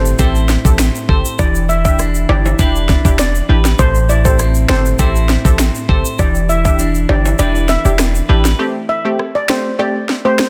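Hypnotic and sultry, this dancehall excerpt at 100 BPM in A minor rides an up-front electronic island pop kit with a knocking kick, sharp snare, smooth hats, finger snaps and rim clicks over a deep, boomy 808-style bass. A twangy clean electric guitar plays arpeggios through digital delay, a detuned sawtooth analog pluck with chorus and a filter sweep fills the harmony, bright close tube shaker and timbales add texture, and a shimmering steel pan carries the melody from 1.4 seconds over Am7 and Em7. The kick drops out at 7.4 seconds and the bass stops at 8.5 seconds before the break at 8.6 seconds.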